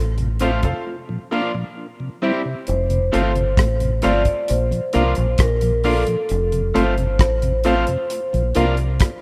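Roots reggae at 66 BPM in F major, sunny and laid-back, this short cut from a longer piece sets a deep, round dub bass and a dry, damped 70s drum kit of tight kick, hi-hat and rim click up front, with analog delay on the drums, a break from 0.9 to 2.7 seconds, and chords moving between F, Bb and C. A soft, flute-like tonewheel organ with key click, a stopped rotary speaker and analog delay sits beside a twangy, slightly broken-up picked electric guitar washed in dub echo, while a brilliant, worn concert grand piano adds intimate stabs with audible action noise. At 2.7 seconds a metallic, ringing vibraphone with slow motor vibrato takes the melody through dub echo, all in a rough home demo mix with light small-room reverb.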